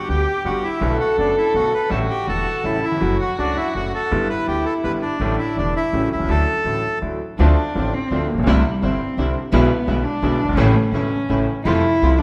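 Heard in a reverberant recital hall with a churchlike ring, this passionate, elegant tango fragment moves in a rubato triple metre. A reedy bandoneon, set up front with a boxy small-room tone, carries the melody until 7.0 seconds, while a dark, smooth-topped cello with light vibrato plays a second line alongside it. A brilliant concert grand piano, also up front and rich in deep bass, supplies the accompaniment. A pizzicato upright bass on gut strings lays a thumpy, woody foundation. At 7.4 seconds the harmony turns to minor, the bowed cello steps forward as soloist, and a close, symphonic string section enters with biting, intense stabs. The passage runs to 12.2 seconds, ending on an F chord.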